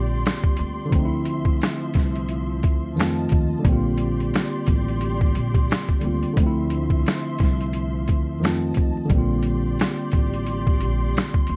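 A worn, slightly out-of-tune tine electric piano opens this reflective, melancholic lo-fi hip hop fragment, heard through a combo amp and placed up front, alongside a lush bowed string section with vibrato and a woody pizzicato upright bass on steel strings. The sampler-style boom bap kit arrives at 0.3 seconds, its compressed, pitched-down sound carrying a gritty 12-bit character, with a thumpy kick, medium-tuned snare, hi-hat and finger snaps sitting prominently in the mix. A jingly, saturated tambourine stays in the background from 0.2 seconds, and the harmony circles through Bb69, Dm9 and F7 in a swung 4/4 groove. The production is dark and warm, with light reverb and a bed of vinyl crackle, and the whole piece is cut from a longer track, ending at 11.6 seconds.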